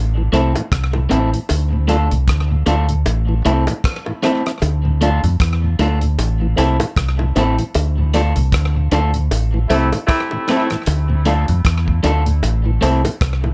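Lightly reverberant and gently rolled off at the top, this laid-back, meditative roots reggae excerpt rides a deep, round, punchy dub bass up front, with a mellow tonewheel organ on slow rotary speaker in the background, a slightly broken-up, picked electric guitar trailing dub echo, a damped, dry 70s drum kit of tight kick, hi-hat and rim click with slapback echo, and high-tuned bongos struck with hard hands, while a clear, tight horn section with light vibrato and its own dub echo sounds briefly from 9.7 to 10.7 seconds within a band accent.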